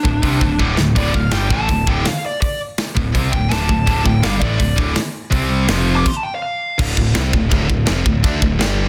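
A dense, heavily limited modern master with small room ambience gives this aggressive, epic heavy metal passage its weight, driven by an up-front tight metal drum kit with bright cymbals, a medium-tuned snare and a tight kick. A dark, smooth overdriven lead guitar carries a soloing melody until 6.8 seconds. Beneath it, a heavy high-gain guitar sits in the background and a scooped high-gain guitar plays picked riffs, both distorted, alongside a punchy fuzz picked electric bass. The drums add a short fill at 0.6 seconds, and a stop arrives at 6.1 seconds before the piece settles on a D minor chord.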